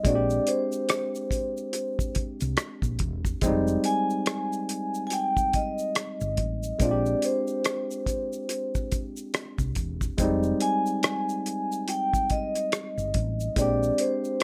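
A lightly reverberant, intimate mix puts a mellow, airy vibraphone, played with soft mallets and a slow motor vibrato, up front over a barky tine electric piano through a combo amp. This late-night, introspective neo-soul R&B cut from a longer piece sits at 71 BPM in 4/4 with a gentle 16th-note swing in F dorian, with chords alternating between Bb13 and rootless Fm9. A cloth-damped, thuddy drum kit with a tight kick, hi-hat and rim click supports the tune alongside a round, woody fretless bass, while egg shaker and finger snaps sit quietly in the background and a slapback echo trails the vibraphone melody.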